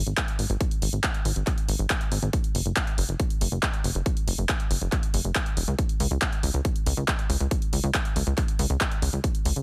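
Emotional and soaring, this uplifting trance excerpt moves at 139 BPM in a straight 4/4, cut from a longer piece and running about 9.6 seconds. A plucky analog bass sits up front from the very start, its sawtooth and square-wave tone shaped by a fast-attack, decaying filter pluck, giving it a punchy, funky edge and a sidechain pumping motion in the low register between E1 and C#2. A punchy analog drum machine enters at 0.1 seconds with dry, overdriven handclaps and hi-hat carrying a touch of small room ambience. An electronic kick drum follows at 0.2 seconds, layered and tape-warm, placed up front with its own small room ambience, and it drops out at 9.3 seconds. The overall mix is dry with little reverb, keeping the rhythm section immediate and forceful.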